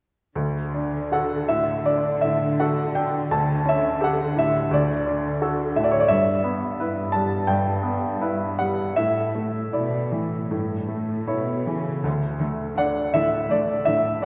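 A bright, brilliant baby grand piano sits up front and carries the lyrical, passionate melody through this fragment of a romantic classical movement for piano and orchestra, played in D major at a flexible, rubato 77-88 BPM in 4/4. Beneath it, a rich symphonic cello section supplies a smooth, even bowed bass line with vibrato, moving through D, Em/G, Asus4 and A before settling on D5. A wet concert hall reverb surrounds the performance, which runs from 0.4 to 14.2 seconds.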